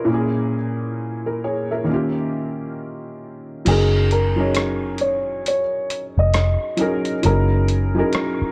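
A felt-muted upright piano opens this dreamy, mellow lo-fi hip hop excerpt alone, its soft, boxy accompaniment carrying audible action noise and a cassette-tape, low-pass filtered haze over A#m7b5 and D#7 chords. At 3.7 seconds the music settles on F#69 as a dark upright piano takes the melody, woody and smooth with long sustain under its own low-pass filter. A vintage fingered electric bass enters at the same moment, foam-muted, round and up front, thickened by tube saturation. A sampler-style drum kit, compressed, pitched down and muffled, joins with crash cymbal, hi-hat and rim click while the kick stays muted, all with a lazy 16th-note swing at 67 BPM in 4/4. The harmony shifts to F#13 at 7.2 seconds, shortly before the close at 8.5 seconds, and the whole mix sits in light studio reverb with the wobble of worn old tape and its warbly pitch drift.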